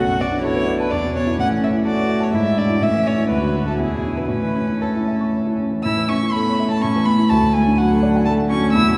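A pure, floating violin carries the melody up front in this spirited, graceful classical-period piano trio movement in A major, moving at a quick 124 BPM in 3/4 with a rubato feel, while a sul tasto cello with light vibrato and an airy bow sings a close second line and a dark, mellow, vintage grand piano with audible action noise supplies the accompaniment, all bathed in a long, wet cathedral reverb that makes this passage sound as if it were played in a church or concert hall.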